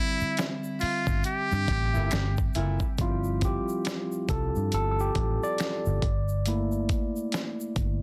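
R&B with a neo-soul lean, this sultry, soulful fragment sits at a slow 69 BPM in G dorian with a swung sixteenth feel, as a muted trumpet with tape echo sings a buzzy, scooped line over a barky tine electric piano, dark foam-muted bass, a gritty sampler-style drum kit with a thumpy kick, and a soft egg shaker with finger snaps tucked in the background. A mellow, distant saxophone section adds brief stabs from 1.9 to 2.8 seconds, and from 3.0 seconds the bright electric piano takes a solo as the harmony moves from Gm69 to G13sus4 and back. The mix carries light reverb under a dense, heavily limited modern master.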